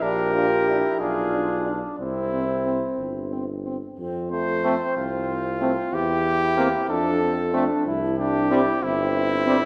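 A warm, up-front trumpet carries the melody over a mellow, softly attacked flugelhorn second line, a brilliant but distant trombone, and a bass trombone with light vibrato, joined at 0.3 s by a clear French horn in the background, in this triumphant, stately classical brass quintet fragment in F major at a slow 62 BPM in 6/8, moving through Bb, Bdim7 and C before settling on F and C within a wet concert-hall reverb.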